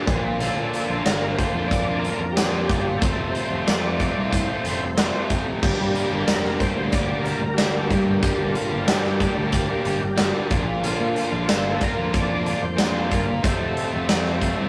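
Classic rock excerpt at a swaggering, driving 92 BPM in straight 4/4, where a bright, double-tracked distorted guitar riff is joined from 0.1 s by a punchy, up-front big rock kit with snare, kick, hi-hat, crash and tambourine and a growly fuzz fingered bass, while a gritty overdriven tonewheel organ with key click, slow rotary speaker and chorus vibrato carries the melody in the background over a very quiet second organ holding thick sustained chords through Bb, F and Gm, all in a rough rehearsal-room recording with moderate stone room reverb.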